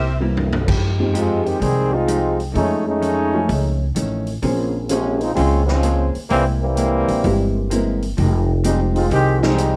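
A bright, tight trombone section with light vibrato takes the lead from 1.2 seconds in this joyful, brassy big band swing excerpt at 128 BPM, backed by a woody pizzicato upright bass, a natural-sounding drum kit with a boomy kick that opens with a short fill at 0.2 seconds, a mellow background baby grand with audible action noise, and a clean, picked hollow-body electric guitar, all under light reverb and the warble of worn old cassette tape.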